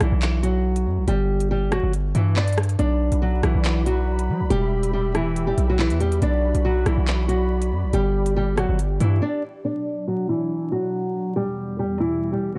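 A half-time drill beat at 140 BPM in B minor sets a dark, cold hip hop mood, with crisp electronic hi-hats, handclaps and rim clicks under a distorted 808-style bass that hits heavy, saturated and up front. A small, fingerpicked nylon-string guitar carries the melody through a low-pass filter and digital delay, joined at 2.8 seconds by a smooth, detuned analog pad with chorus and a long release. The drums stop at 9.1 seconds and the bass at 9.2, and after a brief break the guitar and pad play on through a filter sweep in a dry, dark and warm production dusted with vinyl crackle, cut from a longer piece.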